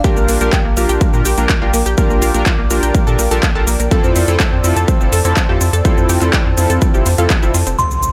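A driving, straight 4/4 groove at 124 BPM anchors this bittersweet progressive house excerpt, with a punchy, overdriven electronic kick sitting up front alongside a layered big-room kit of handclaps, metallic hi-hats and shaker, both dressed in studio reverb. A round, deep analog bass with a nasal, dark edge enters at 0.2 seconds and pumps against the kick, while a detuned sawtooth pluck spins bright arpeggios through a subtle chorus, cassette tape colouring and dub echo. A glossy, retro polysynth adds chorused stabs with pulse-width movement, a sub octave and a filter sweep, also trailed by dub echo. Beneath them, a mellow, smooth pad with a slow attack and long release holds sustained chords in the background, moving from Bb6 to Fmaj7 at 3.9 seconds. At 7.8 seconds a glassy, crystalline FM bell strikes a single warbling C6 as an up-front electronic impact lands, closing this cut from a longer piece in a dry mix.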